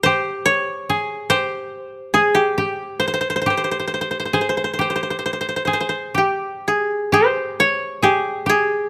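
Two fingerpicked kotos, one carrying the melody up front and a softer second line beneath it, trace an austere, calm passage of Japanese traditional chamber music in a free, rubato feel, their dry, woody tone caught by close, detailed microphones with light reverb, in a short fragment of a longer piece that shifts to a new section at 7.1 seconds.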